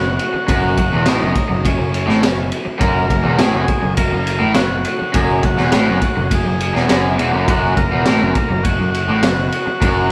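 Swaggering and rowdy, this garage rock clip from a longer piece struts at 103 BPM in F# mixolydian on an F# chord, with a buzzy, overdriven combo organ carrying the melody over a bright, double-tracked garage guitar riff dressed in spring reverb, a punchy fuzz bass, and a crunchy breakbeat kit with a high-tuned snare, tight kick and dark cymbals entering at 0.2 seconds, all captured as a band playing live in one room with light reverb.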